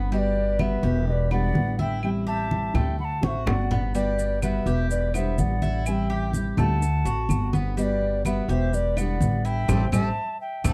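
A straight 4/4 groove at 125 BPM drives this warm, sunny Latin cut of Cuban son and guajira in G major, where a thumpy, gut-strung pizzicato upright bass sits up front beside a deep, thumb-plucked nylon-string guitar through a Gmaj7–Em7–Am7–D7 cycle, a bright, metallic Cuban tres picks arpeggios on double strings, a pure clay alto ocarina with vibrato and chiff carries the melody over a mellow, straight-toned concert flute second line, low-tuned congas and woody claves sit in the background, grainy maracas join at 3.9 s after a drum fill at 3.2 s, and a band accent at 9.7 s closes the excerpt in light reverb and a dark production.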